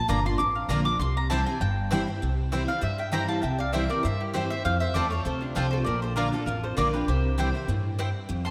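Soaked in plate reverb, this dreamy-sounding excerpt of lively, rustic bluegrass swings along as a round, up-front mandolin takes the melody through tape echo, opening with a mandolin solo over the first 2.2 seconds. A bright, full-bodied jumbo steel-string guitar with fresh strings picks the accompaniment through an ensemble chorus, while a second, woody mandolin adds stabs and a thumpy, dark upright bass with gut strings is plucked underneath. At 2.7 seconds a metallic, nasal lap resonator guitar played with slide and fingerpicks joins with a second line under subtle chorus.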